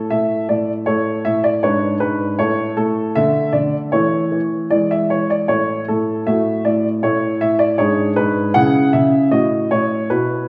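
A solo baby grand piano, warm and open with long sustain and sitting up front in the wet reverb of a recital hall, plays a cheerful, elegant classical-period sonatina passage in a straight 2/4, moving through chords such as G#dim, A/E, E, A and C#m before reaching F#m7/A in this brief portion cut from a longer piece.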